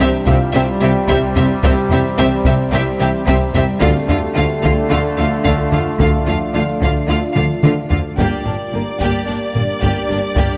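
A straight 4/4 pulse at 110 BPM, driven by a heavy-stick taiko ensemble with a fill at 7.4 seconds, anchors this vast, futuristic hybrid orchestral and electronic film-score excerpt in G minor, where a clear, distant violin section carries the melody over a focused second violin line, a dark viola section and rich cello and double bass sections on the bass, while mellow French horns and bright trombones hold chords (the trombones until 7.9 seconds), an ethereal pad sustains, a soft round pluck plays arpeggios and a felt-muted upright piano adds vintage texture, all set in a moderate scoring-stage reverb as the harmony moves from C to Dm and settles on Gm at 8.2 seconds.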